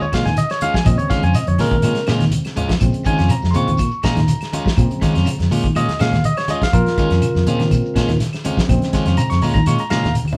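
A barky, lightly overdriven tine electric piano solos from the start over a single Bbm7 chord in this funky, driving afrobeat groove in Bb minor at 123 BPM, joined by slightly broken-up picked electric guitar stabs, low-tuned thick-skinned congas and a grainy shekere in the background, then a second guitar playing phaser-coloured arpeggios, a dark, round, foam-muted fingered bass, a soul drum kit with a tight kick, medium-tuned snare and rolled-off top that fills at 2.2 and 10.2 seconds, and very quiet woody claves, all captured as a band playing live in one room with moderate studio ambience.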